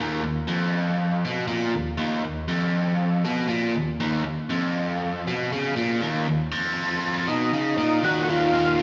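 A biting, overdriven electric guitar drives this short rock excerpt, its double-tracked, picked riff sitting up front and low, spanning Eb2 to Eb3 from the opening second through 8.8 s. The mood is gritty and swaggering, set at 120 BPM in a straight 4/4 feel in Eb minor, with a power chord on Eb at the start giving way to an Eb minor chord at 8.0 s. At 7.3 s an overdriven tonewheel organ joins up front with a thick, percussive melody between Eb4 and Gb4, colored by key click, second harmonic percussion, chorus vibrato, a slow rotary speaker and slapback echo. A lush hall reverb with a 1.8 second decay wraps the sound in digital ambience, giving a big arena feel mixed with the closeness of a small room. Cut from a longer piece, it closes at 8.8 s just as the organ gets going.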